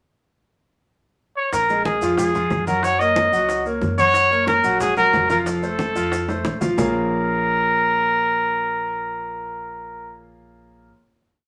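Set in a wet studio reverb, this short, driving and passionate salsa piece at 183 BPM in Bb minor opens with a brief pickup before a clear, punchy, vintage-style solo trumpet enters up front at 1.4 s with scooped, motif-based call phrases, backed by a woody, thumpy gut-string upright bass playing a tumbao that anticipates the chords, a bright concert grand piano laying down an octave montuno with deep bass, and background bongos in steady eighths with hand bell, congas with slaps and open strokes, and grainy maracas that drop out after a drum fill at 6.3 s. Trumpet, piano and bass then move to the closing Bbm7 chord, with the trumpet fading at 10.2 s and piano and bass ringing until 10.9 s.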